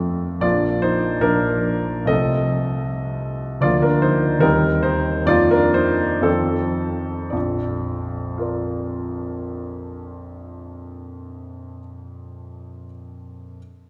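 A polished, up-front grand piano opens this brief romantic character piece in B-flat major, playing alone in a hopeful, passionate mood at a free, rubato 2/4 pulse between 54 and 79 BPM, tuned to A4 = 441 Hz. The harmony moves from B-flat through F7, C minor 7 and a suspended F7 while the tempo slows from 2.9 to 7.3 seconds, arriving back home on B-flat as a new section begins at 7.3 seconds. The piano's range reaches from deep B-flat in the bass to E-flat near the top of the treble, surrounded by a long, wet church reverb that lets each chord ring in the hall.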